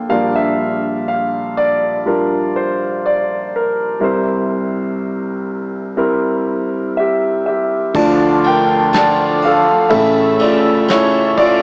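Heartfelt and tender, this acoustic folk-pop ballad excerpt opens with an up-front, warm concert grand piano carrying the melody alone with deep bass and long sustain over Gm7/Bb and C7, until at 7.9 s a dark, smooth brush drum kit and a woody, thumpy pizzicato upright bass (which stops at 10.3 s) join while a reedy, nasal hand-pumped harmonium adds breathing sustained chords as the harmony moves to Dm and A, with the piano, drums and harmonium carrying cassette-tape color inside a moderate spring reverb and a homespun, small-speaker sound.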